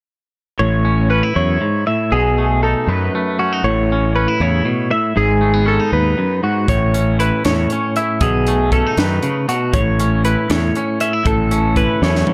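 Playful and wistful, this math rock and midwest emo fragment in 6/8 sets a twangy electric guitar's harmonic-tremolo chords beneath bright twelve-string arpeggios trailed by analog delay, all anchored by a punchy, fuzz-overdriven fingered bass, before a crisp fusion drum kit with a high-tuned snare and pumping small-room sound enters at 6.7 seconds and closes on a drum fill at 12.0 seconds, all within a dark production touched by light reverb.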